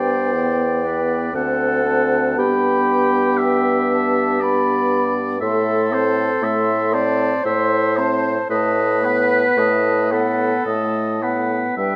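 Classical slow romantic movement for wind quintet, elegiac and solemn, cut from a longer piece, in a rubato 3/4 at 54-60 BPM, where an airy, expressive concert flute carries the melody with vibrato over a clear, distant oboe second line, a soft-attacked clarinet and a roomy French horn in the accompaniment, and a warm, up-front bassoon bass, all set in a moderate recital hall reverb as the harmony moves from G through D7 and Am to B7/A.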